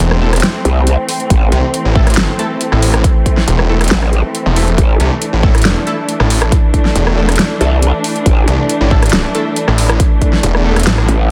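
A clear, lush studio string section holds sustained chords in A minor from the very start, pumping against the beat under a low-pass filter. Bold orchestra-hit-like synth stabs sit in the background, their detuned sawtooth layers coloured by built-in reverb, phaser and delay. Beneath them a snarling distorted saw bass growls up front, resonant and detuned, with overdrive adding bite. The big-room dance drum kit brings a huge snare and metallic hats, and a punchy overdriven electronic kick arrives at 1.3 seconds to anchor the half-time 138 BPM groove. A wobbling growl bass, saturated and chorused with a formant-filtered edge, surges in at 0.7 seconds and returns in short bursts. This heavy wobble dubstep excerpt, cut from a longer piece, sounds aggressive and dense, with light reverb and a heavily limited modern master.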